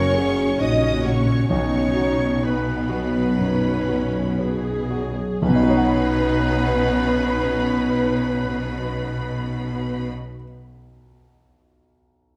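Bathed in the wet reverb of a recital hall, this tender, moving cinematic film score in B major drifts at a rubato 57-72 BPM, slowing over its first 5.4 seconds as an F# chord gives way to Badd9: a distant, expressive violin section carries the melody above a second line shared by a pure, very quiet flute section, a focused, smooth-topped background violin section and a soft-attacked solo clarinet, while a lush viola section and a short-sustained grand piano accompany, a mellow French horn section holds sustained chords, a bright, ringing concert harp plays fingerpicked arpeggios, and close, even cellos share the bass with a bowed double bass section, with the piano lingering alone until 12.4 seconds.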